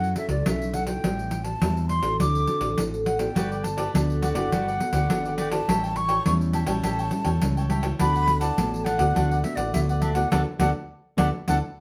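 Samba and choro at 103 BPM in D major, this joyful, lively excerpt has a wooden flute carrying an airy, vibrato-rich melody over thumb-plucked classical nylon-string guitar, a dark, round fretless electric bass and a jingly pandeiro played with hard hands, both up front. A crisply picked cavaquinho joins at 3.4 seconds as the chords move from F#m7 through Gmaj9 and A7 to D6, and the band hits an accent from 10.3 seconds to the end. The group plays live in one room, bathed in a wet studio reverb.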